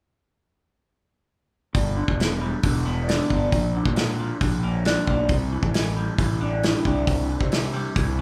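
A fuzz-soaked fingered electric bass growls through this short cut from a longer quiet-loud alternative rock piece at 135 BPM, its bright, overdriven tone entering at 1.8 seconds beneath a dark, slightly broken-up electric guitar picking lo-fi arpeggios through a phaser. A loose indie drum kit sits up front with a tight kick, medium-tuned snare and hi-hat, its rolled-off top giving an acoustic small-room feel, as the band, playing live in one room with light reverb, moves from G to Bb to Cadd9. The mood is anthemic and cathartic, with the straight 4/4 drive carrying a sense of release until the parts stop around 8.2 seconds.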